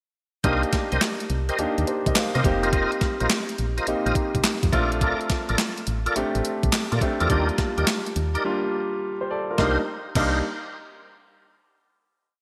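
New jack swing R&B at 105 BPM in C dorian, confident and bouncy, with a hard 16th-note swing driving a short piece that moves from Cm7 through F7sus4, Bbmaj7 and Ebmaj7 before a break at 8.4 seconds and a final Cm7 chord at 9.6 seconds. An up-front, overdriven 12-bit drum machine with a thumpy kick, a snare layered with handclaps, hi-hat, crash and gated reverb sits over a punchy, round FM bass line with muted ghost notes, while a clear, polished baby grand piano pushes rootless chords with short fills. A tonewheel organ adds short syncopated stabs through chorus vibrato, slow rotary speaker and digital delay, all set in a lush hall ambience with a bright 1980s-style digital sheen.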